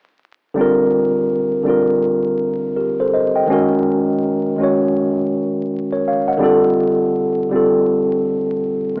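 The recording has a lo-fi, homemade character, captured on cassette, with a bed of vinyl crackle, a thin AM-radio tone and a wet spring reverb around it. This is a reflective, nostalgic hip hop fragment cut from a longer piece, moving at 82 BPM in 4/4 with a lazy swing on the sixteenths. The only voice is a mellow tine electric piano, playing accompaniment from 0.5 seconds to the end at 9.0 seconds and sitting up front between D3 and G5. Its tone is worn and a touch out of tune, lightly overdriven and softened by a low-pass filter, as if heard through built-in speakers. Set in C dorian with the tuning at A4 = 439 Hz, the harmony drifts from C5 to Ebm7 and then to Dm7, giving the passage a hazy, wistful glow.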